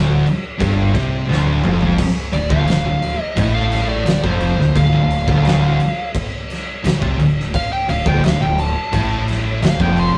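Hypnotic and brooding, this stoner and doom metal excerpt crawls at 86 BPM in D minor, built on low riffs from a double-tracked, bright high-gain guitar and two thick fuzz guitars, one dark and very quiet, beneath a woody, thumpy upright bass played pizzicato on gut strings with overdrive. An oversized low-tuned drum kit sits up front with a boomy kick, fat snare, dark cymbals and a gritty, saturated, pumping room sound, and its fill at 1.3 seconds leads into a compressed fuzz lead guitar solo that enters at 2.3 seconds and runs to the end. The whole take has the rough feel of a rehearsal room, soaked in a wet small-room reverb.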